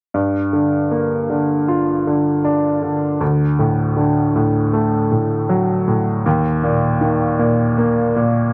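A woody, slightly detuned upright piano sits up front from 0.1 seconds, its long-sustaining accompaniment moving from Gm7 to D to Eb5 in a melancholic, heartbroken pop fragment cut from a longer piece, caught in a dry, close 1970s-style studio sound with a touch of small room reverb.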